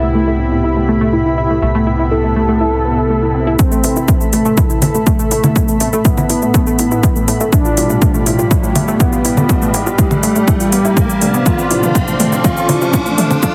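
A punchy, overdriven electronic kick sits up front in this melodic techno passage at 122 BPM in A minor. It arrives at 3.6 seconds alongside an overdriven house kit of congas, toms, shaker and metallic hi-hats, both carrying the ambience of a large room. Before that, a thick, nasal unison lead with vibrato, subtle chorus and dub echo carries the melody over a lush, warbling pad whose sustained chords pump with the sidechain. A round, bright analog pluck spins arpeggios through chorus and dub echo, while fat, brassy synth stabs and a tight, driving sawtooth sequencer bass sit further back, also pumping. Beneath them a swarming, tense drone holds a very quiet A, and an electronic riser enters at 5.8 seconds as the harmony moves through Cmaj7, Amadd9, G7 and Dm7 and the music builds from 3.6 seconds onward. A drum fill from 11.5 seconds heightens the cinematic, melancholic mood within a dry, heavily compressed, radio-like mix.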